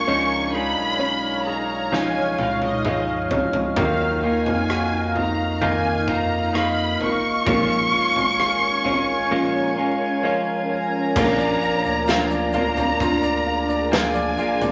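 A slow, straight 4/4 pulse carries this longing, heartbroken pop ballad, cut from a longer piece. Up front, a lush bowed violin section sings the melody with expressive vibrato. A clear grand piano sits in the background with audible action noise, while a clean, compressed electric guitar recorded direct picks out arpeggios and a shimmering, ethereal pad holds dark, slow-blooming chords with chorus and its own reverb. Underneath, a deep, thick saturated sub bass sustains the low end. A huge arena drum kit with a fat snare and punchy kick enters at 1.9 seconds with a fill, and after a break at 9.3 seconds a grainy, mellow tube shaker joins quietly at 11.2 seconds as the harmony shifts. The whole mix sits in a wet studio reverb with a layer of vinyl crackle.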